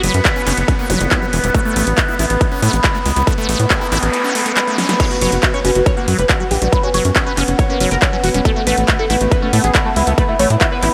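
An overtone-sweeping drone opens this intense, hypnotic psychedelic trance excerpt at 139 BPM, with sustained F#5 and A5 chords pumping against a tight, punchy sawtooth sequencer bass, a squelchy, resonant acid bass riff with phaser and analog delay, and a big-room drum kit of huge snare, metallic hats, handclaps and crash, joined at 0.2 seconds by an up-front layered kick. A very quiet zap and noise sweep leads into a drum fill at 4.8 seconds, and at 5.0 seconds a gritty, screaming, guitar-like lead enters with chorus, phaser, vibrato and a diffuse ambient delay. The dreamy mix is soaked in a huge reverb, with a faint mains hum underneath.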